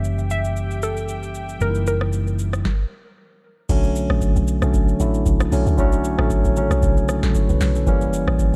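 Amapiano at 115 BPM in B minor with a late-night, deep mood, opening over an F#7b9 chord as a hollow, detuned square-wave pluck carries the melody through chorus, low-pass filter and tape echo, beside a clean tine electric piano, a reedy chamber string section with gut-string tone and sidechain pumping, and a round, punchy hollow-body electric bass, all under a filter sweep. After a stop from 2.7 to 3.7 seconds, the drop brings in a dark, percussive log drum bass on Bm9, while the booming analog drum machine with deep kick, crisp snare, metallic hats, rim click and shaker keeps a swung sixteenth-note feel. The sound is dry and close, with the drums and electric piano up front, in a short cut from a longer piece.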